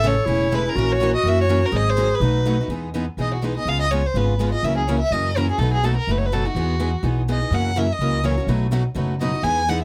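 Acoustic string swing in the jazz manouche style at 249 BPM in E major, swinging and charming, where a bowed violin with vibrato and a breathy, subtone clarinet share the opening until the clarinet stops at 2.6 s, leaving the soft-attacked violin to solo expressively with portamento from 2.7 s over two bright, boxy picked steel-string parlour guitars, one sitting in the background, and a woody, thumpy pizzicato upright bass up front, recorded with close, detailed microphones and little reverb.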